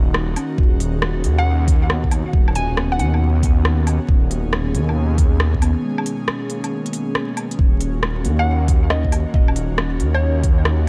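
Melancholic and rainy, this future garage excerpt drifts on a swung 16th-note feel with a prominent bed of vinyl crackle and a dry, close sound. Up front, a menacing detuned saw bass grows and evolves through a filter swell with saturated grit, while a knocking, layered electronic kick sits beside it and gives the low end its weight. Around them, an organic electronic kit adds smooth, tape-softened hi-hats, rim clicks and woodblock, and a breathy, airy pad holds sustained chords with chorus and sidechain pumping. Deeper in the background, muted felt-like synth keys play dark, intimate accompaniment, roughened by vintage 12-bit sampler grit and trailed by tape echo. A hollow, bouncy square-wave pluck carries the melody in two short phrases, from 1.4 seconds and again from 8.4 seconds, with a break arriving at 5.8 seconds between them.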